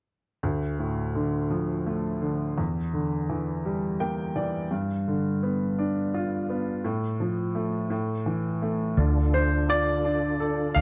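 Dark, gently reverberant recital-hall sound frames this dramatic, melancholic pop ballad excerpt in D minor at 56 BPM in six-eight, where a clear, woody upright piano carries the accompaniment through Dm, Em7b5, G7 and F/A with a fill at 3.6 seconds, before a round, foam-muted electric bass and a mellow tonewheel organ with key click, chorus vibrato and fast rotary speaker join at 9.0 seconds, and a polished baby grand piano melody with delay enters at 9.3 seconds.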